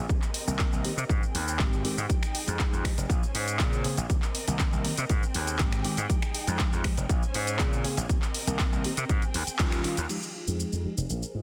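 Filtered disco house with a funky, nostalgic mood, built on a gritty, overdriven slap bass up front and a punchy, overdriven electronic kick, while a house kit of handclaps, finger snaps, hi-hat, shaker and crash cymbal adds its own overdriven grit. A mellow, clean tine electric piano with phaser and a focused, bowed string section in the background both pump under sidechain compression through a low-pass filter over a looping seventh and ninth chord cycle. The full band hits an accent at 9.6 seconds, a filter sweep begins at 10.1 seconds, and a tight, pop-style horn section slips in quietly at 10.3 seconds under a dense, heavily limited master with light reverb.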